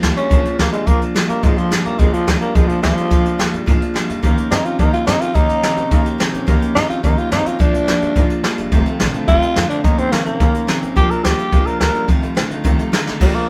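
Rockabilly at a rowdy, retro 214 BPM in Bb mixolydian, this excerpt features a growling, raspy tenor saxophone melody with scooped notes entering at 0.2 s up front over brushed drums with dark cymbals and a boomy kick, a slightly broken-up, twangy electric guitar riff through a small old amp, a woody, thumpy upright bass and a bright, full-bodied picked acoustic guitar with finger squeak in the background, all played live in one room over a Bb7, Eb7 and F7 progression before a drum fill at 13.1 s.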